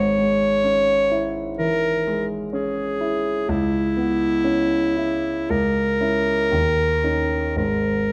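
Classical romantic duo in an elegiac, yearning mood at a slow, rubato 54-64 BPM, where a clear, close-miked solo clarinet sings the melody up front over the warm, natural accompaniment of a concert grand piano with deep bass, both set in light reverb and caught by detailed microphones in this brief 8.1-second fragment of a longer piece built on C-sharp minor harmonies.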